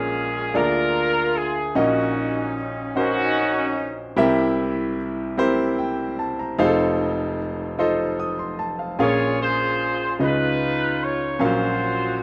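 Slow, solemn gospel in 6/8 at 50 BPM, this soulful passage in Bb minor is cut from a longer piece and moves through chords such as Bbm7, C7, F7 and Db9. A clear, intimate baby grand piano plays accompaniment throughout, up front with natural tone and audible action noise. A mellow, vintage-sounding jazz horn section carries the melody with a soft attack and light vibrato, sounding from the start to 4.1 seconds and returning at 9.0 seconds, all in a small room with moderate reverb and a rough home-demo mix.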